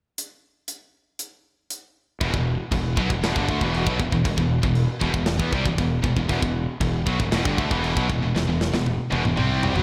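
A big arena sound bathed in lush hall reverb frames this relentless heavy metal excerpt in E minor at 118 BPM, where a tight, up-front drum kit opens alone with china cymbal, hi-hat, tight kick, snare and toms. At 2.2 seconds three picked guitars crash in on an E minor riff: an overdriven one and a distorted high-gain one sit bright in the background, while a scooped, double-tracked high-gain layer stays very quiet. Beneath them a growly, fuzz-laden fingered bass drives the low end, and the drums close with a fill from 8.3 seconds.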